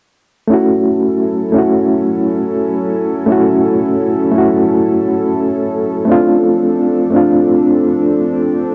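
A home cassette recording with a moderate spring reverb gives this short trip hop excerpt a smoky, dark air at 86 BPM in a straight 4/4. A brilliant, reedy electric piano sits up front from 0.5 seconds, playing accompaniment through tremolo, tape echo and cassette grit. A warbling, detuned pad joins at 0.8 seconds, holding slow-attack chords with chorus and a wistful lo-fi haze as the harmony moves from F#m7 to Dm7 at 6.1 seconds.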